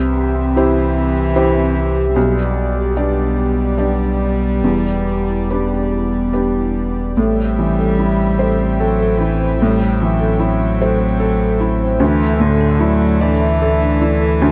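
Reflective and fragile, this neoclassical piano and strings excerpt drifts at 74 BPM in 3/4 with a rubato feel. A felt-muted upright piano sits up front with the accompaniment, its tone mellow and intimate, with audible action noise from the thin felt. Beneath it, a sub bass with octave lays a deep, sine-based foundation, while a single bowed cello carries a second line, rich and pure with a soft attack, played sul tasto. A smooth, detuned sawtooth pad with chorus holds sustained chords, and a vibraphone struck with medium mallets, motor off, adds metallic, ringing arpeggios from the background with slapback echo in a boxy small room. The harmony moves from C through G/B and Em7, shifts to Am7 at 7.2 s and settles on Dsus2 at 12.0 s, all in light reverb within a rough home demo mix with dulled highs.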